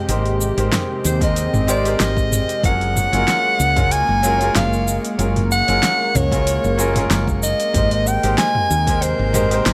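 A close-miked soprano saxophone with subtone, vibrato and scooped notes carries the jazz-style melody from 1.1 s in this relaxed, smooth, lightly swung sunset chillout excerpt, floating over a brilliant grand piano with digital delay, a thick, detuned chorused pad in the background, a round, dark fretless bass with tube saturation, a deep house kit of fat snare, metallic hats, cabasa and toms, and a deep, tape-warm electronic kick, all set in light digital ambience.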